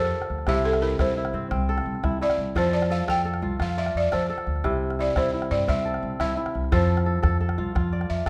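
Set in a 12/8 metre with a straight feel, this joyful short piece of West African string and xylophone music is cut from a longer performance. The balafon carries the melody throughout and takes the spotlight as soloist, its dry, buzzing tone from rubber mallets sounding airy and sitting up front. Beneath it, the kora spins bright, ringing fingerpicked arpeggios with a crisp edge. The pizzicato upright bass on gut strings gives a dark, thumpy low end with a woody grain, while the calabash adds deep, close percussion. The harmony moves back and forth between C and F, and a moderate recital-hall reverb gives the whole ensemble a warm sense of space.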